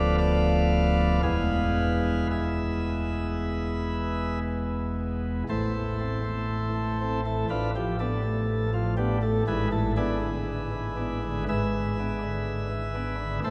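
A solo chamber organ opens on a principal chorus with a full, up-front sound and a distinct chiff at the start of each note. Its chamber voicing is set in a wet cathedral reverb with a long 5.6-second decay, so the instrument seems heard from further back in the room. This is a dark, solemn classical chorale in 4/4, moving slowly at around 56-62 BPM with a freely bending rubato. The harmony opens on Bm7b5/D and moves to E. At 5.5 seconds a second phrase begins on Am, passing through Bm7b5/A and arriving on E7/G#. The organ spans D1 to F5 and plays alone throughout this passage cut from a longer piece, which runs to 13.5 seconds.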